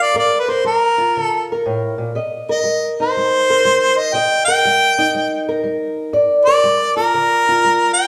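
A clear harmonica and a fingerpicked acoustic guitar start together, opening a mournful, smoky stretch of acoustic country blues cut from a longer piece. The harmonica carries the melody up front with a light vibrato and scooped notes, played in a jazz style as a solo voice. Beneath it, an old ladder-braced guitar gives the accompaniment a dark, woody, boxy tone from its old strings, sitting a little lower in level than the harmonica. The swung feel moves from Gm7 to Cm7 and back to Gm7 by 6.1 seconds. The pair sound as though they are playing live in one large studio, wrapped in a wet reverb that carries both parts through to the close at 8.1 seconds.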